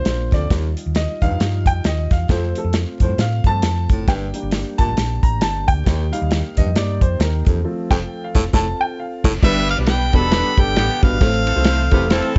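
Danceable and uplifting, this swung, 1960s-style soul fragment opens with a woody upright piano taking a solo for the first 9.4 seconds over a dry, up-front drum kit, a round hollow-body electric bass, a very quiet flute-like tonewheel organ with key click and slow rotary speaker, and a breathy, subtoned baritone saxophone riff, and after a band accent at 7.6 seconds a clear harmonica melody with scooped notes and a smooth-topped horn section line arrive at 9.4 seconds, in a lightly reverberant room carrying faint mains hum.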